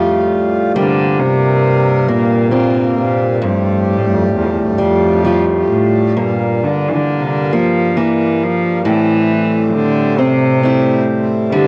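Loose, rubato beats sway through a slow 6/8 in this mournful, haunting Celtic slow-air excerpt, with chords drifting from Fadd9 through Gm to Am7. Up front, a single bowed cello carries the melody with a rich, gut-string, period-style tone, while a boxy parlour steel-string guitar is fingerpicked beside it, finger squeaks and all. Underneath, a hand-pumped harmonium holds mellow, reedy, breathing chords, the whole trio caught on cassette at home in a moderate studio reverb.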